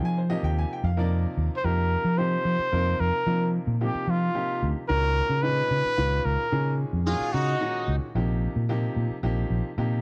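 Funky and intense, this 10-second jazz excerpt in F minor moves at 74 BPM in a straight 6/8, with a brilliant grand piano and a dark, round fingered electric bass up front carrying the harmony through chords like Fm7, F9sus4 and Db9sus4, while a clear trumpet with light vibrato and a soft attack sings the solo melody from 1.6 to 7.9 seconds through a slapback echo, a biting, double-tracked overdriven guitar adds a brief phased second line near the end, and the whole is caught in a dry, close 1970s-style small-room sound.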